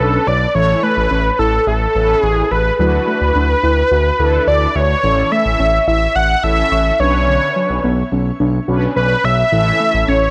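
Synth-pop at 107 BPM in A major, this upbeat, nostalgic excerpt from a longer piece sets a thick, bright unison lead with vibrato, shimmer reverb and analog delay up front over mellow, brassy chorused synth brass, a soft round pluck playing dark arpeggios in the background, and a smooth, up-front synth bass, moving through Bmadd9, A and Dadd9 in a dry, gritty hardware recording with light digital ambience.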